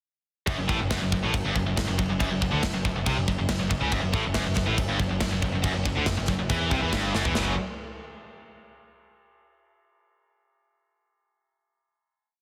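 Heavy metal in F# minor at 140 BPM, aggressive and relentless, with a scooped, high-gain guitar and a tight distorted guitar set further back both picking a single-note riff, while a punchy, direct picked electric bass drives eighth notes that double the riff. An up-front acoustic kit in a big room, with bright cymbals, a medium-tuned snare and a tight kick, plays a metal drive groove and throws in a drum fill at 7.1 seconds. This short, complete piece closes on an F#5 final chord from 7.4 seconds, all in a dense, heavily limited modern master with light reverb.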